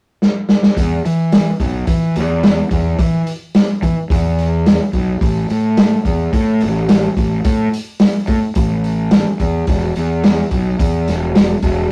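A straight 4/4 groove at 108 BPM drives this confident classic rock excerpt, where a muffled, punchy vintage drum kit with hi-hat, kick and snare opens with a fill at 0.2 seconds before a growly, overdriven fuzz bass enters up front at 0.8 seconds, all captured in a rough rehearsal-room recording with light reverb and saturated character.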